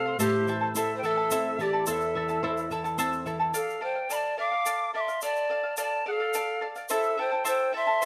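Earthy and wistful, this Andean folk excerpt at 72 BPM in a straight 6/8 moves from A minor to D minor and back, with a polished wooden pan flute carrying the airy, vibrato-rich, tongued melody up front. A cane quena adds a bright, soft-attacked second line above it. A shimmering, fingerpicked charango with double strings rings out close, while a fingerpicked flamenco guitar lends warmth until 3.5 seconds. A grainy tube shaker enters at 0.2 seconds, all set in light reverb with close, detailed microphones.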